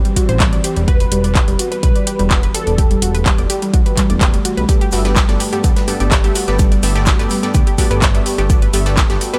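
A punchy, up-front electronic kick drives this hopeful, euphoric progressive house cut at 126 BPM in a straight 4/4, with tape-warm handclaps and metallic hi-hats layered on top, while a fat, detuned analog bass pumps beneath chords moving from Am to Em and on to Gadd9 in G major. A round, chorused analog pluck arpeggiates with delay over an evolving, morphing wavetable pad phased in the background, and a catchy plucky unison lead with 12-bit sampler grit and tape echo appears briefly from 0.9 to 3.2 seconds. At 4.7 seconds, punchy supersaw stabs with delay arrive alongside a very quiet acoustic studio kit of snare, hi-hat and shaker, all set in a small room reverb.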